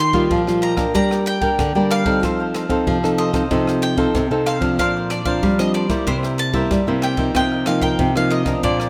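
A bright, double-strung bowl-back mandolin carries the melody in this sunny, playful samba and choro excerpt, over a crisp picked cavaquinho, a full-bodied fingerpicked nylon-string guitar with audible finger squeak, a second up-front classical nylon-string guitar holding the bass, and an airy open jazz drum kit with a boomy kick, dark ride cymbal and rim clicks, all set in a rough home-demo mix with light reverb.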